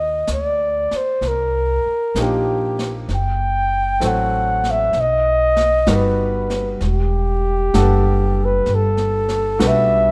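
Lightly reverberant and intimate, this excerpt from a romantic, late-night jazz ballad at 64 BPM in swung 4/4 puts a dark, close-miked flugelhorn with light vibrato and a woody pizzicato upright bass up front, with a brushed small-room drum kit sitting low in the mix from 0.3 s and a clear upright piano, its action noise audible, joining the accompaniment at 2.2 s as the harmony moves through Ebmaj7, F#m7b5, B and Em11.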